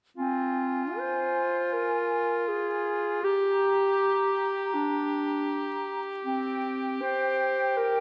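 Close, detailed microphones, a moderate scoring-stage reverb and vinyl crackle frame this hopeful, uplifting cinematic excerpt in free time, where a warm, roomy solo clarinet sits up front from 0.2 to 8.0 seconds alongside a clear, lightly vibrato-tinged classical oboe and an airy, hollow small flute group with straight tone and crisp attack, all three moving over an Fm/C chord that shifts to Gm before the harmony falls away.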